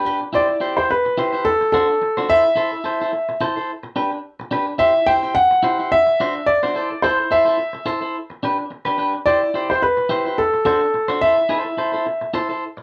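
Sultry, danceable disco with a light swing in 4/4, cut from a longer piece, where a clean, twangy, compressed electric guitar sits up front in accompaniment from 0.0 to 12.8 seconds. A concert grand piano carries the melody from 0.3 seconds, its intimate tone, deep bass and audible action noise placed close and natural, over chords moving through Cmaj9/E, D7, C6, G/D and Emadd9. The band plays live together in one room with a moderate studio ambience.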